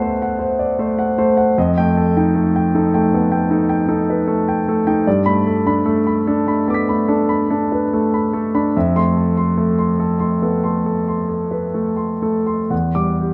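Classical impressionist solo piano in 9/8 with a free, rubato feel sets a mysterious, nocturnal mood across this brief excerpt cut from a longer piece. A warm concert grand piano plays alone for the full 13.3 seconds, sitting up front with a natural tone and a deep bass that reaches down to D2, while its range extends as high as C7. The harmony drifts through rich extended chords, opening on D9, moving to F9 at 1.6 seconds, then Gadd9 and Fmaj7 before settling on Em9 near the close. Close, detailed microphones capture the instrument intimately, while a moderate recital hall reverb adds a gentle halo around each sonority. The result feels suspended, like a half-lit room at night.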